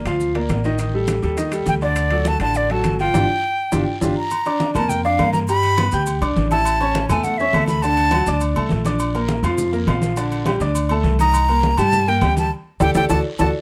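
A bright silver concert flute carries the melody up front, airy and expressive with vibrato, entering at 1.7 seconds, pausing at 8.4 and returning at 11.2 in this fiery, danceable salsa cut at 205 BPM in G minor. A brilliant concert grand piano with long sustain and a woody, thumpy pizzicato upright bass drive the harmony, while thick-skinned congas, ringing timbales and agogo bells, a raspy guiro and grainy maracas sit in the background. A drum fill and band accents punctuate the passage around 3.1 seconds and again near the close, under light reverb and close, detailed miking.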